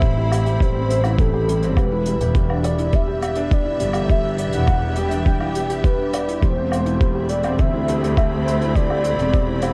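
This intimate, hypnotic piano-and-strings electronica fragment opens at once with a velvety synth lead carrying the melody over a felt-muted upright piano riff, a bowed double bass section and a lush string section holding sustained chords. The lead is smooth and mellow, built from detuned sawtooth and triangle tones with a fast attack and chorus. The upright piano sounds soft and muted, with its action noise audible. The earthy double bass section sits up front with light vibrato. The distant, focused strings share that bass part's sidechain pumping, which gives the chords a breathing pulse. A compressed, pitched-down electronic kick thumps up front with overdrive until 9.5 seconds, while brushed hi-hat and woodblock sit quietly in a studio room; the dark, warm reverb frames a progression that moves from Am7 to Em7 at 1.8 seconds and settles on Am7/E.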